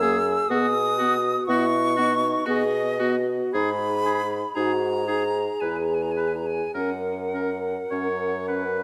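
An airy, bright silver flute sings the melody up front with expressive vibrato from the first moment, over a gently vibrating warm oboe second line, a soft-edged, vintage-toned French horn, a mellow clarinet in the background and a bassoon bass also placed up front, in this serene, rubato slow romantic movement for wind quintet in 3/4 at 51-63 BPM in B major, moving from F#9 to B, G#m, E and F# within a moderate concert-hall reverb, cut from a longer piece, with the clarinet stopping at 8.6 seconds just before the others at 8.8.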